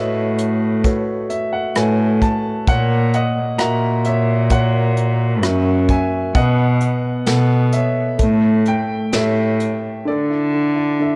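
A grand piano with audible action noise and a boxy, intimate sustain carries the melody over a reedy, gut-string bowed cello bass from the start of this heartbroken, melancholic acoustic folk-pop ballad fragment at 65 BPM, with a soft brush kit of punchy kick, rim click and hi-hat entering at 0.4 s, a piano fill from 0.8 s and a shift through F#7/A#, B7 and A7 before the drums stop at 9.8 s and the piece settles on Dsus2, all in a dark production with light reverb.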